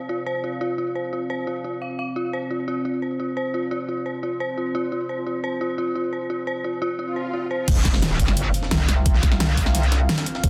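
A metallic, wobbling FM bass, saturated and up front with chorus and overdrive, slams in at 7.7 s for the drop of this tense, dark technical drum and bass excerpt at 174 BPM, joined by an overdriven knocking electronic kick, a dubstep kit with a huge snare, bright hats and crash, a very quiet, gritty, pitched-up breakbeat sampler kit, and a background electronic impact. This follows an opening where a deep, warbling ambient pad under a filter sweep and an eerie, inharmonic detuned bell arpeggio with tape echo build into a background electronic swell, all in a lush hall reverb and a dense, heavily limited master.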